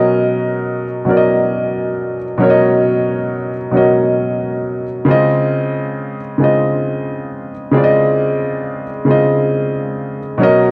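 In a slow, straight 6/8 at 45 BPM, this intimate R&B fragment cut from a longer piece features a clear, natural grand piano playing solo and up front from Cb3 to Ab5, moving from Cbmaj9 to Dbmaj9 at 5.1 seconds in Db major beneath light reverb and the worn, warbling pitch drift of old cassette tape.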